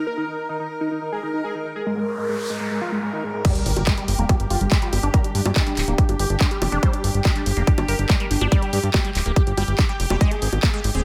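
A dreamy, reverb-soaked mix with a digital plate sheen opens this hypnotic, intense psychedelic trance excerpt, cut from a longer piece. From the start, a thick, detuned unison lead carries the melody through phaser and delay, while a bright, bubbling texture of random filter steps holds sustained chords under chorus and its own reverb, both pumping against the sidechain. An electronic noise sweep runs from 2.0 seconds into an impact as the drop lands at 3.4 seconds, bringing in a punchy, up-front electronic kick, a layered big-room kit of bongos, handclaps, hi-hat and crash cymbal, and a squelchy, resonant acid bass riff sitting in the background behind phaser and diffuse ambient delay. A fat analog bass joins at 3.7 seconds, its detuned sawtooth and ring-modulated tone sweeping through a filter up front beneath the driving groove.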